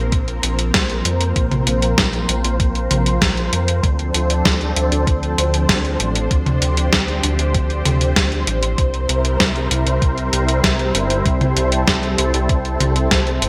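Synthwave at 97 BPM in D minor with a nocturnal, cinematic mood, where a silky, up-front analog string pad with ensemble chorus and vibrato sustains chords moving from Bbsus2 to Dm7 at 3.8 seconds and C7 at 8.8 seconds over a glossy, detuned chorused synth bass with a filter pluck, both pumping from sidechain, while a clean 12-bit digital drum machine with a medium-tuned snare and gated reverb plays alongside a thumpy electronic kick drum in a bright 1980s-style digital production with moderate plate reverb, all cut from a longer piece.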